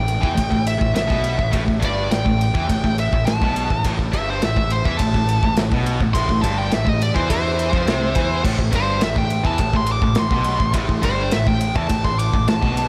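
A steady, straight 4/4 pulse at 104 BPM drives this relentless, epic heavy metal excerpt in A minor, resting on a single A minor chord throughout its 12.9 seconds. A modern studio drum kit enters at 0.1 s with a punchy kick, medium-tuned snare, crash and ride cymbals, its acoustic sound mid-forward with a rolled-off top. A tight, double-tracked distorted guitar churns out the riff low in the mix's register, while a growling picked electric bass with overdrive sits in the background beneath it. Over this, a high-gain lead guitar plays a solo across the whole passage, ranging from C5 to D6 and colored by slapback and tape echo. The guitars sound bright and stand up front, all set in a lush hall reverb that gives the recording a big arena feel.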